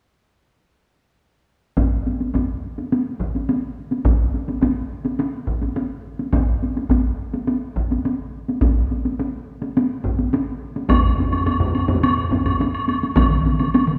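A ceremonial, driving passage of Japanese traditional taiko drumming, cut from a longer piece, opens at 1.8 seconds with two ensembles of drums at a straight 105 BPM in 4/4. One group, struck with hard sticks, sits up front with the close feel of a small room, while the other, played with heavy sticks, sounds distant and cavernous. At 10.9 seconds a third ensemble of heavy sticks arrives, compressed, saturated and up front, alongside a woody, far-off woodblock that lingers through the final moments. The closing stretch brings solo taiko drums with hard sticks, their tone compressed and saturated, sounding to the end at 14.0 seconds. A wet reverb with a long tail, like that of a church or concert hall, lends the whole excerpt a grand, resonant weight.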